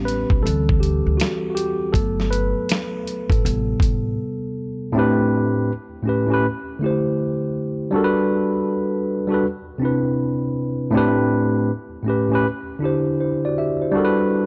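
A hazy, melancholic lo-fi hip hop excerpt at 80 BPM in A dorian opens with a worn, slightly out-of-tune tine electric piano, mellow and up front behind a low-pass filter, carrying the lead across chords such as D9sus4, Gmaj9 and Am9. Underneath, a woody, dark upright bass with gut strings plays thumpy pizzicato notes, while a gritty, compressed sampler-style drum kit adds a thumpy kick, a medium-tuned snare and hi-hat, coloured by vintage 12-bit grit and sitting up front. The groove swings its sixteenths at 64%, giving the short opening a loose, head-nodding lilt. The bass and drums drop out by 4.1 seconds, and the electric piano carries on alone through a break into a second passage. There it moves through Am11, A9, D9sus4, Gmaj9 and Cmaj9, then returns through Am11 and A9 to D9sus4 and Gmaj9 until the cut at 14.5 seconds, with a light reverb softening the whole.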